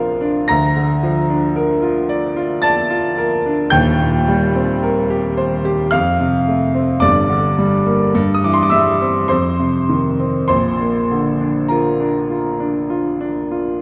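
In a rubato 3/4 at roughly 48-57 BPM, this lyrical, tender classical excerpt in Bb major is carried by a lone grand piano, brilliant and vintage in tone, with long sustain, placed up front and spanning Eb1 to Bb6. Its accompaniment moves from Bb/D through Cm7/Eb, F, Gm, C/G and F5 before settling on Bb at 10.5 seconds. A generous scoring-stage reverb surrounds the playing, and the overall production leans dark.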